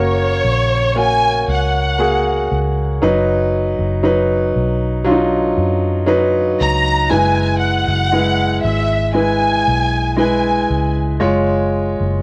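A straight 58 BPM pulse in 4/4 carries this emotional, hopeful pop ballad fragment in F# major, where a dark, lush symphonic violin section sings the melody up front with vibrato and portamento, coloured by cassette tape and tape echo until 10.9 s, over a concert grand piano with deep bass, also on cassette tape, and a round, punchy, foam-muted fingered electric bass, captured in the moderate booth ambience of a home cassette recording.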